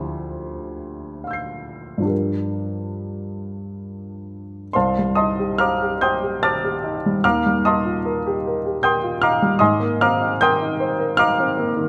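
A present, up-front baby grand piano plays alone through this hazy, wistful fragment of impressionist classical music, drifting in rubato 3/4 at roughly 66-80 BPM in C dorian. Its rich chords move from Dm11 and Gm7 into a second section at 4.7 seconds that passes through Cm6, Ebadd9 and Ab69, all caught by close, detailed microphones in light reverb.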